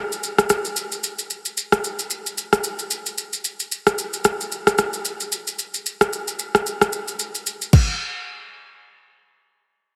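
A heavily compressed, radio-like sound sits inside a lush hall reverb with a 2.5-second tail, giving this brief cut from a longer amapiano piece a soulful, late-night atmosphere. At 112 BPM in 4/4, the groove carries a 58% swing on the sixteenths, lending it a relaxed, rolling feel. A smooth R&B drum kit, electronic and polished in character, plays from 0.1 seconds, setting a soft kick beneath crash cymbal, rim clicks and shaker. The kit was re-recorded in a small room and sits up front in the mix, so its close, boxy presence contrasts with the spacious hall around it. The drums stop at 7.9 seconds, shortly after the music moves into a new section at 7.7 seconds, which carries on to the 10-second mark.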